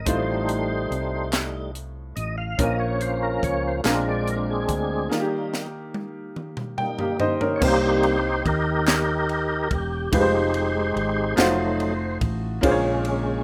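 A slow gospel groove in 6/8 rolls along at 48 dotted-quarter beats per minute with a straight feel, jubilant and hopeful in mood, in a short cut from a longer piece. A tonewheel organ sits up front with full, lightly overdriven sustained chords, colored by chorus vibrato, a slow rotary speaker and plate reverb, and it carries the solo voice throughout. A clear, woody upright piano with plate reverb supplies the accompaniment and adds a fill near the end of the first section, while a round, hollow-body short-scale electric bass anchors the low end. A crisp fusion drum kit with dark cymbals, a high-tuned snare and a punchy kick plays a fill during a break from 5.1 to 7.6 seconds, and band-limited group handclaps come and go in two stretches starting at 1.3 and 8.9 seconds. The harmony moves through chords such as F7/A, Bbm, Eb, Cm7, Fm9 and F7b9, all captured in a rough home demo mix with moderate room reverb.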